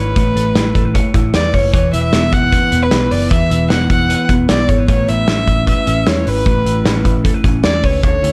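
Jangly indie pop at 152 BPM in A major, nostalgic and youthful, in a short cut from a longer piece that moves from Aadd9 to Esus2 at 1.7 seconds and back at 4.9 seconds. An up-front, nasal bowed violin with vibrato carries the melody over arpeggios from a dark, slightly broken-up electric guitar through a small old amp, while a round, foam-muted picked bass holds the low end. A loose acoustic drum kit with a punchy kick, medium-tuned snare and hi-hat enters at 0.2 seconds in a pumping studio room, all set in a dark production with moderate small-room reverb.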